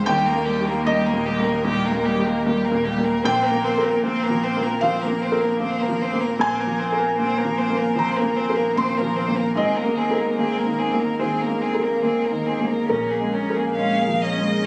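Longing and fragile, this rubato neoclassical fragment puts an intimate felt-muted upright piano up front, with a distant, vibrato-laden solo violin carrying the melody over an expressive, soft-attacked cello line, both sliding between notes, while a very quiet, hollow, flute-like pad sustains chords and a deep sub bass sits in the background, all captured on a phone in the room with club reverb and compression.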